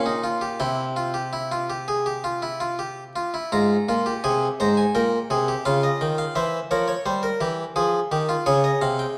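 A solo harpsichord of the Flemish style, plucked on a single set of strings, sits up front with a bright voice in this brief baroque-style fugue in three parts, cut from a longer piece. The mood is solemn and serious, set in F minor at 85 BPM in a straight 4/4, with the instrument tuned to A4 = 437 Hz and ranging from Ab2 up to Bb5. The opening phrase moves from Gm7 to C, and at 3.5 seconds a second section begins on Fm/Ab, passing through Bbm and C7/E before settling on Fm at 7.8 seconds. A recital hall's reverb, with a decay of 1.5 seconds, wraps the playing in a wet acoustic, while the overall production leans dark and warm. The excerpt lasts just over nine seconds.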